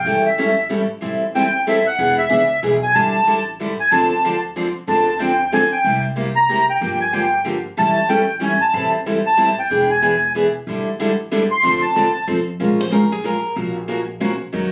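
Swinging and virtuosic, this short excerpt from a longer acoustic string swing piece in the jazz manouche style moves at a brisk 187 BPM in 3/4 time, with a swung eighth-note feel in D minor. A reedy, sweet accordion with light tremolo tuning takes the solo from the opening until 12.6 seconds, sitting close-miked, dry and up front in a high register. Beneath it, a bright, full-bodied picked steel-string acoustic guitar carries the accompaniment, while a woody pizzicato upright bass sits low and far back in the mix. As the accordion drops out, a second picked steel-string guitar, darker in tone and dressed in plate reverb, steps forward with a brief melodic solo at 12.8 seconds. The harmony cycles through seventh chords such as A7, Dm7 and E7 before turning to Bbm7 and Gbmaj7/Bb near the close, all heard in a small, reverberant room with the casual presence of a phone recording.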